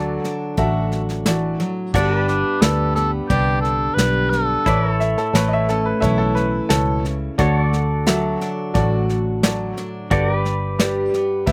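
Honky-tonk and classic country at an easygoing 88 BPM in G major, this heartfelt excerpt sets a concert grand piano, a picked, full-bodied steel-string acoustic guitar and a dark, round, foam-muted electric bass under a pedal steel guitar whose fingerpicked, slide-played chords carry a lush chorus and volume swells, while a soft brush kit with punchy kick enters at 0.2 seconds. A clear cor anglais with light vibrato takes the melody from 1.9 seconds in a classical style, and at 5.0 seconds a brilliant, woody upright piano adds a brief second line with slapback echo. The sound is dry, with little reverb, as if played outdoors.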